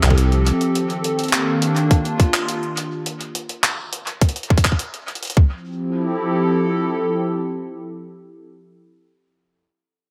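IDM at 104 BPM in a straight 4/4, this wistful, glitchy fragment of a longer piece sits in F major and moves from Fmaj9 to Ebmaj7 before the harmony drops out at 3.1 seconds and returns to Fmaj9 as a second section opens at 5.4 seconds. A hollow, flute-like pad carries the sustained chords through the whole 8.4 seconds, with slow-attack, detuned tones softened by chorus, a ring-modulated edge, a breathy noise layer and the grit of an old 12-bit sampler, all pulsing under sidechain pumping. A deep, rubbery acid bass gives a resonant, saturated pluck on C2 in the opening half-second before decaying. A tight electronic kick and a pitched-up, compressed jungle-style sampler kit of handclaps and hi-hat sit up front with a tape-tinged, small-room character until about 5.5 seconds, and the kit's diffuse ambient delay trails behind it. A dreamy plate reverb soaks the mix in a digital ambience.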